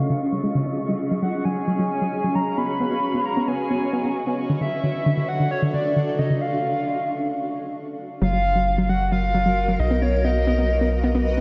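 A dreamy, reverb-soaked haze with a dark, filtered top frames this wistful, intricate IDM excerpt, where a warbling, nostalgic lead sings over a blurred granular cloud pad and soft, round chorused arpeggios under a filter sweep, while a bright, bubbling stepped-filter texture drifts in the background until 6.4 seconds, and after a break a rubbery, hollow square bass enters up front at 8.2 seconds.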